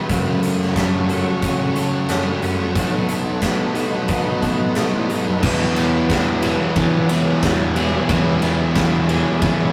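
Shoegaze and dream pop rock with a dreamy, wistful mood, where a silky, warbling string machine with ensemble chorus and a very quiet, twangy twelve-string electric guitar in arpeggios sit behind thick fuzz and overdriven semi-hollow guitar riffs, a round fuzz bass and a punchy, up-front rock drum kit in a bright stone room, all through a rough rehearsal-room sound with tube saturation, and a crunchy, double-tracked overdriven guitar riff joins at 5.4 s as the chords move from F#m and B7 to Eadd9.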